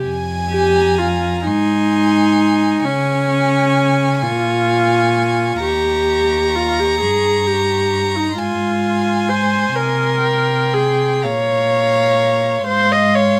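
Two violins and a cello open together in this slow, romantic string quartet movement in F minor, joined half a second later by the viola. The pace is a halting 43 beats per minute in 6/8, with uneven beats and free rubato that give it a solemn, melancholic air. The first violin carries the melody, its rich tone sitting in the background, while the second violin traces a warm line just beneath it. Up front, the viola's accompaniment and the cello's bass give the lower voices a close, intimate presence. Each part is played by a single bowed player with light vibrato, soft attacks and a sul tasto touch, and the upper three strings share an airy bow sound. Harmonies move from F minor through Ab, Bbm7 and Eb7, settling on Fm/Ab at 12.7 seconds in a light reverb, as this short passage, cut from a longer piece, comes to a close.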